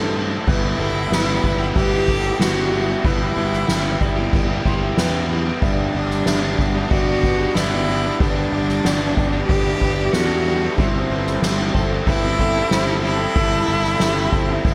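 Lightly reverberant, this melancholic, cathartic post-rock excerpt at 93 BPM in E minor carries an up-front bowed cello melody, expressive with vibrato and portamento and touched by slapback echo and digital delay, entering at 0.5 seconds over soft-mallet drums with dark cymbals, a fat snare and a boomy kick from 0.2 seconds, a round fingered electric bass, bright picked riffs from a compressed distorted electric guitar with slapback echo and an overdriven electric guitar with phaser, very quiet twangy twelve-string electric guitar arpeggios, mellow felt-muted upright piano arpeggios with echo and delay in the background, and a faint, shimmering chorused pulse-width pad holding sustained chords through Emadd9/G, Gmaj7 and C6/G.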